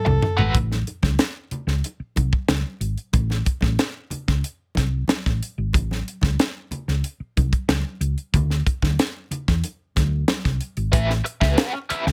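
Funk excerpt at 92 BPM in 4/4 with a straight, strutting feel in A mixolydian, opening on a drum fill under a rootless D13 chord before settling on A. A growling alto saxophone flashes by in the first 0.6 seconds, its raspy, scooped jazz-style tone sounding just one note, A4, while an overdriven electric guitar plays briefly alongside it, bright and compressed with wah and tremolo. From 0.1 seconds a tight funk drum kit drives the groove up front, its high-tuned snare and tight kick sounding dry, joined by a dark, round hollow-body short-scale bass played with the fingers and congas ringing softly in the background. Around 8.3 seconds the chords drop out while the bass and drums carry on, the congas stop at 10.4 seconds, and at 10.9 seconds the guitar returns over an A9 chord as the piece moves into a new section. Light reverb gives the close, dry sound a touch of space.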